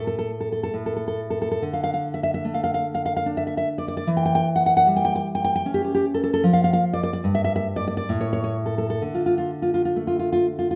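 A nylon-string guitar carries this romantic piece alone, its fingerpicked tone full-bodied and deep, with the occasional finger squeak audible as it sits up front in the mix. The mood is intimate and melancholic, set in D minor and 3/4 time, with a rubato feel that lets the tempo drift between 59 and 77 BPM. The guitar spans from G2 up to G5, moving from an open, chordless opening into a D5 sonority at 1.6 seconds, then a C#dim/E, another chordless stretch at 6.4 seconds, and back to D5 at 9.0 seconds. A moderate recital hall reverb surrounds the playing, giving the notes a gentle sense of space. Tuned slightly high at A4 = 444 Hz, this brief passage of about 10.8 seconds is cut from a longer piece.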